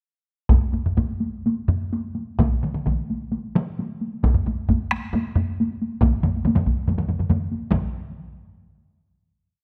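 Ceremonial and driving, this short, complete Japanese traditional piece for taiko drum ensemble moves in a straight 4/4 and speeds up from start to finish. Four taiko parts sit up front: two with heavy sticks play a repeating pattern, one entering at 2.4 seconds, while two with hard sticks play taiko phrases, one of them close and dry, the others in a small room. Close, detailed microphones and a moderate stage reverb frame the ensemble until a final hit at 7.7 seconds.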